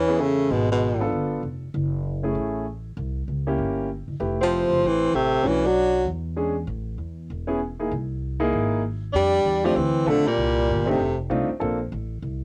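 Warm and sophisticated, this short excerpt from a longer piece is small-group jazz in a swing-and-bop style, moving briskly at 194 BPM in 4/4 with a light swing on the eighth notes. A close-miked baritone saxophone carries the melody with vibrato in short bursts, joined by a vintage-toned tenor saxophone playing a second line above it, both sounding at 0.0, 4.4 and around 9.1 seconds. Underneath, a woody pizzicato upright bass on steel strings runs the whole way through, while a concert grand piano with deep bass and a natural tone supplies accompaniment from 0.1 to 11.8 seconds. The harmony is rich with extended and altered chords, passing through colors like G#dim, C7b9 and Fmaj9#11 before settling into F major for the second section at 9.1 seconds. Light reverb and the character of a home cassette recording give the horns and piano a homespun, lived-in intimacy.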